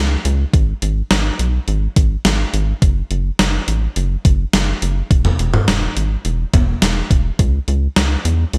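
Synth-pop in a melancholic, nocturnal mood, this short excerpt from a longer piece opens on a rubbery, hollow square-wave bass with a resonant filter pluck, dark and bouncy up front. At 0.3 seconds a gated 80s digital drum machine joins with a thumpy kick, hi-hat, toms and a snare bathed in gated reverb, its tape-tinged, sampler-style sound re-recorded in a small room. The overall mix stays dry and close.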